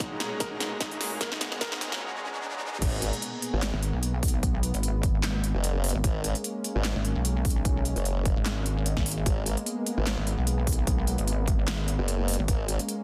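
A swung, half-time 4/4 groove drives this chaotic, heavy wobble dubstep fragment, cut from a longer piece. A punchy, tape-flavoured electronic kick and an up-front big-room dance kit, re-recorded in a large room, with crisp hats, a punchy snare, handclaps, toms and crash cymbal play from the start, with drum fills across the opening build-up. Over a lush, detuned supersaw pad that pumps against the kick, a clear, boxy grand piano plays a brief dub-echoed melody in the background. A cloudy, blurred granular pad drifts in the background through the opening seconds, while a background electronic riser pushes the build-up toward the drop at 2.8 seconds. There an up-front, saturated formant-sweep wobble bass takes over the low end, joined at 3.7 seconds by a heavy, mellow pulsing pluck wobble bass, both thickened with chorus and overdrive. The whole mix is dense and heavily limited, with light reverb.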